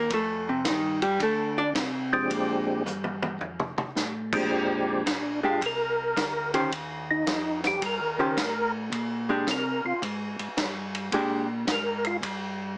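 A percussive tonewheel organ with a slow rotary speaker and chorus vibrato carries the melody from 2.1 seconds and takes the solo at 4.5 seconds in this soulful, bluesy soul jazz organ trio swing fragment, following a dark, clean hollow-body archtop guitar solo and backed by a lightly overdriven, round bass line on a second organ with key click, plus an up-front vintage drum kit with a tight kick and a fill at 2.9 seconds, all heard through a heavily compressed small-speaker radio sound in a moderate club reverb.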